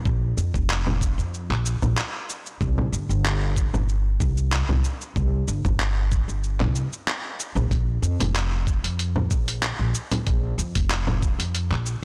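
From the first instant, a woody pizzicato upright bass, a gritty sampler-style soul drum kit and a thumpy electronic kick enter together in this earthy, organic downtempo piece cut from a longer work. The up-front acoustic bass, strung with steel, sits low in its register, and transformer saturation and sidechain pumping give it a thick, breathing push. The dusty kit is compressed and tape-toned, blending congas, handclaps, hi-hat and shaker over a lightly swung 16th-note feel, with soft clipping roughening its snare. The kick, similarly compressed and grainy, drops out at 11.4 s, shortly before the bass ends at 11.9 s. A light reverb surrounds the blown-out, overdriven recording, leaving the groove sounding close, hazy and warm.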